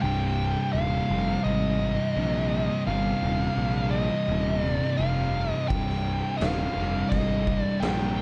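This heavy, ominous stoner and doom metal excerpt opens with a compressed fuzz lead guitar carrying the melody up front, over a thick bed of low riffing guitars sitting on a single C minor chord. Beneath it, a round, overdriven electric bass with tube saturation sits prominently in the mix. The riff is layered from a bright, double-tracked high-gain guitar in the background and two dark fuzz guitars, one set behind the others and one very quiet. At 5.7 seconds an oversized, low-tuned acoustic drum kit enters with a boomy kick, a medium-tuned snare and crash cymbal, its saturated, gritty sound ringing in a stone room. Studio reverb gives the whole a dark, warm production, and the clip cuts off at 8.2 seconds as part of a longer piece.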